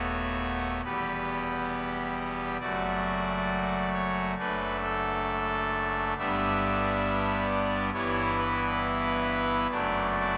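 A bright, brassy trumpet stop on pipe organ sits up front in this reverent, majestic classical chorale, played solo at 68 BPM in 4/4 with a straight feel and a romantic voicing that spans D#1 to E5. Cut from a longer piece, the 10.4-second passage moves through chord changes from B7/D# and Em to F#m, G and a closing D/F#. A cavernous cathedral reverb with a 6.2-second decay surrounds the organ, and the tuning sits at A4 = 439 Hz.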